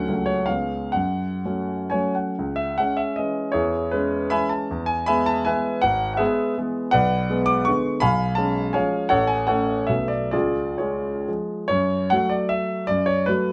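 A clear, polished grand piano sits up front in a light reverb, its present tone carrying this short solo cut from a longer classical piece. It is a romantic triple-time dance in 3/4 with dotted rhythms, played with rubato at a tempo that moves between 117 and 176 BPM, giving it a capricious, nostalgic air. The piano spans G#1 to D6, opening in C# minor with an F#m/C# chord and a turn through C#7 before a new section begins at 2.4 seconds on C#m. That middle passage moves through E and E/G# harmony, then shifts toward F# minor from 6.9 seconds with G#m7b5/B, C#7/B and Bm7 colouring the way. A C# chord leads back to the opening material at 11.7 seconds, settling on F#m as the fragment closes at 13.5 seconds.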